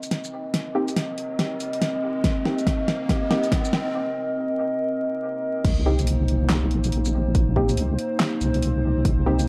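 A deep, wobbling sawtooth bass arrives up front at the drop at 5.6 seconds, sitting under a dark, wave-folded analog pad that sustains a Cm7 chord with lush chorus throughout this meditative, heavy deep dubstep cut in C minor at 141 BPM with a half-time, swung feel. Muted, mellow filtered dub chord stabs carry cassette-tape colour and dub echo, while a tape-warm deep house kit with fat snare, handclaps, hi-hat, shaker and crash opens with a fill during the build-up, joined by a deep electronic kick from 2.2 seconds. A background riser and sub drop lead through a brief break into the impact, all set in moderate spring reverb with vinyl crackle.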